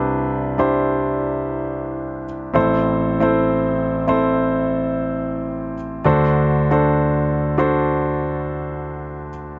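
An intimate, up-front solo concert grand piano carries this tender, heartfelt pop fragment of a longer piece, its deep bass, long sustain and audible action noise framed by light reverb as it moves through Cadd9, Am and D7 over about 9.6 seconds.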